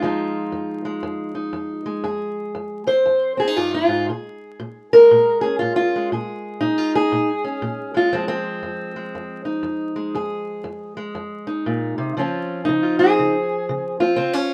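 Brooding and mournful, this short excerpt of acoustic country blues in F minor swings at 119 BPM in 4/4 as a lone fingerpicked steel-string parlour guitar, dark, boxy and up front, moves from Fm7 through Bbm7 and back to Fm7 before settling on Dbmaj7 at 12.2 seconds, set in a moderate studio reverb beneath a layer of vinyl crackle.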